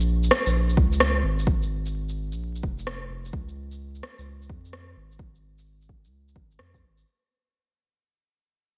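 A shuffling 16th-note swing at 129 BPM in 4/4 drives this wistful, nocturnal future garage fragment, cut from a longer piece. Overdriven electronic shaker and rim click sit up front from the opening moment, and a deep, overdriven electronic kick drum joins at 0.8 s and drops away at 6.8 s; both drum parts carry the roomy character of having been re-recorded in a large space. Underneath, a soft dub sub bass spans F1 to F2 with a round, sustained tone blending triangle and square waves, its fast attack breathing with sidechain pumping. Vinyl crackle and light reverb lend the whole a dusty, late-night haze. The seven-second passage stays in one section while fading out across its entire length.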